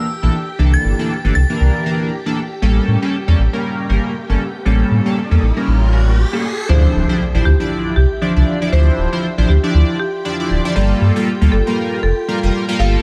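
A deep, full sub bass with an added octave sits up front from 0.2 s, anchoring this moody, late-night deep house passage at 118 BPM in D minor, its 4/4 groove carrying a light swing on the sixteenths. A retro, glossy chorused polysynth plays stabs throughout, its pulse-width and sawtooth tones colored by phaser, digital delay and a filter sweep, while a silky string machine hovers in the background with ensemble chorus. A crystalline FM bell flickers briefly at the very start, and an electronic riser builds from 4.2 s into an impact as the drop lands at 6.7 s, where a woody marimba with medium hard mallets takes the melody, roughened by vintage 12-bit sampler grit and delay. A warbling, nostalgic, lo-fi pad drifts in behind it at 7.7 s, dark and detuned under chorus and its own reverb. The harmony moves from C13 and A7b9 into Dm9 and Gm9, all set in a digital ambience, in this section cut from a longer piece.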